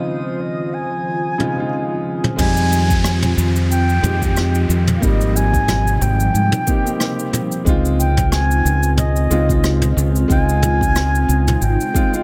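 Swinging sixteenths at 91 BPM in 4/4 carry this blissful, smooth sunset chillout piece, where a clear, intimate grand piano with audible action noise and analog delay and a soft, breathy pad with chorus hold Dbmaj9, Fm9 and Abmaj7 harmony beneath a pure wooden flute melody with vibrato, sampler grit and delay, while a glassy, drifting harmonics texture glints briefly at the start as a filter sweep moves over the drums; then from 2.4 seconds an up-front fingered electric bass with tube saturation, a deep layered electronic kick and an electronic downlifter join the dark-cymbaled brush kit of cabasa, crash, rim clicks and toms, in an echo-heavy mix with moderate spring reverb.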